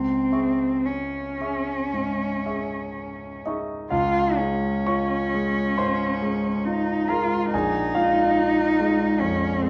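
Romantic classical music for cello and grand piano, this short excerpt from a longer piece has a yearning, melancholic mood, moving at 55-72 BPM in 4/4 with a free, rubato feel. The bowed cello carries the melody in a warm, expressive voice, shaped by vibrato and portamento; it sits up front yet has a slightly distant quality. Alongside it, the clear concert grand piano provides accompaniment that is intimate and polished, with deep bass, long sustain and audible action noise adding to its close presence. The harmony opens on C# minor, then shifts to Db major at 3.9 seconds, where a new section begins, and reaches a Bb5 chord at 7.5 seconds. Both instruments sound through a recital hall reverb, and the overall production leans dark.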